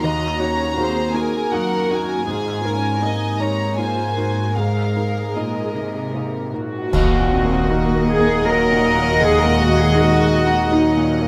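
Moving in a loose, rubato three-beat lilt, this cinematic film-score excerpt carries a longing, sorrowful mood, cut from a longer orchestral piece. Two violin sections share the upper lines, one holding the floating, pure melody and the other tracing a second line just beneath it, both bowed sul tasto with a soft attack. A clear, intimate grand piano supplies accompaniment with its action noise faintly audible, while a dark, woody viola section adds lush vibrato from the background and a very quiet concert harp rings out mellow fingerpicked arpeggios. Up front, a warm cello section anchors the bass, joined at 6.9 seconds by a smooth, intimate chamber double bass section on a single low note, landing with an accent from the ensemble as the opening phrase returns. Between 4.6 and 8.4 seconds a cymbal swell, clash cymbals and concert bass drum bring dark, close weight to the arrangement, all set in a light reverb with detailed, close-miked sound.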